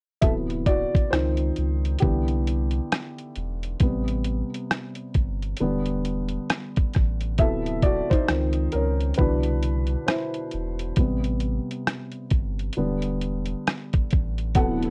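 A gritty, compressed boom bap drum kit with a thumpy kick, hi-hat and rim click sets a swung 67 BPM lo-fi hip hop groove in A minor alongside a deep, round dub sub bass, while a dark, woody upright piano with audible action noise and a low-pass filter takes the lead, moving through D13, C#maj9, Cmaj9, Am9 and Em7. The mood is nostalgic and reflective, and the whole piece is coloured by worn, warbling cassette tape with little reverb. At 14.5 seconds, soft sawtooth string machine violas with ensemble chorus slip in with sustained chords just as the clip is cut off.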